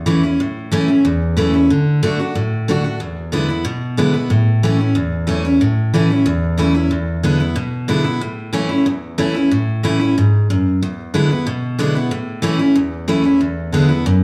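Rock with a retro, upbeat mood at a brisk 184 BPM in A major, this fragment cut from a longer live gig features a bright, full-bodied picked steel-string dreadnought acoustic guitar with fresh strings, sitting up front and taking the solo role through its E2 to F#4 range over A, D and E7 changes, heard through the venue's PA with club reverb and small room ambience.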